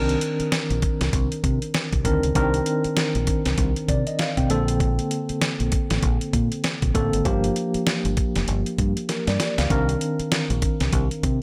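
A swung sixteenth-note groove in 4/4 drives this punchy, slick new jack swing excerpt, carried by a gritty, compressed sampler-style drum kit that starts at 0.1 seconds with a thumpy kick, a fat snare and hi-hat sitting up front. Underneath, a deep dub fingered electric bass gives a dark, round low end with a direct, amped punch. A tine electric piano supplies the chords, its clean tone shimmering with a medium tremolo through a combo amp and placed forward in the mix. The harmony moves from Cm9 to Bbmaj9 and Gm7 before returning to Cm9, with a short drum fill from 9.1 to 9.7 seconds leading back into the opening chord. The sound is dry and close, with little reverb, and this short R&B passage is cut from a longer piece.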